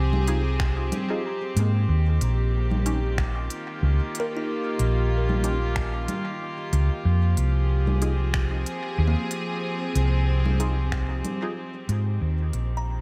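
Ambient dub with a hazy, spacious mood, this swung excerpt from a longer piece rests on a round, dark hollow-body electric bass up front, a floating, soft-attack bowed string section holding sustained chords, and a muffled, pitched-down kick that thumps from 0.6 seconds. Congas, finger snaps and smooth hi-hats from an overdriven electronic kit carry dub echo, while in the background a woody kalimba picks arpeggios through echo and a muted, detuned sawtooth chord stab sounds with phaser and echo. Light digital reverb surrounds the mix until a fade-out begins at 10.5 seconds.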